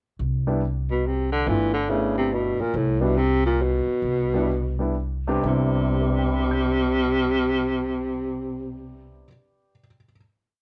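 This short, complete jazz piece in small-group swing and bop style sets a sophisticated, swinging mood in 3/4 at roughly 121 to 142 BPM, with a swung eighth-note feel in C major. A mellow baritone saxophone carries the bebop-style theme from 0.9 seconds, sitting up front with a subtone, vibrato and scooped notes, touched by plate reverb. Beneath it, a pizzicato upright bass on gut strings gives a woody, thumpy two-feel pulse. A grand piano adds syncopated comping in rootless voicings, its intimate, natural sound carrying audible action noise. The tempo slows from 2.7 seconds as the harmony moves from G7 to Cmaj9, and the group settles onto a final chord at 5.4 seconds. The whole recording sits in a moderate studio room and has the worn, warbling pitch drift of old cassette tape.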